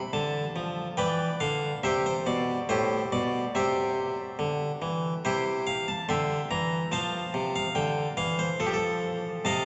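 A bright, plucked French-style harpsichord on a single set of strings plays alone up front in this serene, dance-like fragment of a baroque-style suite movement, moving with a rubato feel at around 71 BPM in 4/4 from C major to F major at 5.2 s, while a long, wet cathedral reverb fills the space and the recording is heard from further back in the room, with nothing above 8.0 kHz.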